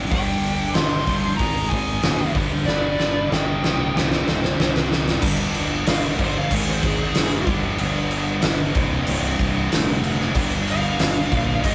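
A rough rehearsal-room sound with tube saturation and a moderate studio reverb frames this aggressive, heavy hard rock passage at 94 BPM in a straight 4/4, cut from a longer piece. The huge arena drum kit sits up front with a punchy kick, fat snare and bright cymbals ringing in a big room, and it plays a fill from 2.7 to 5.2 seconds. Underneath, a growly, direct fingered electric bass anchors the low end while three picked rhythm guitars drive the riff: a scooped high-gain part in the background, plus a very quiet overdriven cranked stack and a very quiet double-tracked heavy high-gain guitar. A dark, distorted high-gain lead guitar carries the melody throughout, joined until 4.9 seconds by a fuzzy octave-fuzz lead tucked in the background as a second line. From 5.2 seconds the lead guitar takes a solo over a Gm, Ab, G, Cm progression.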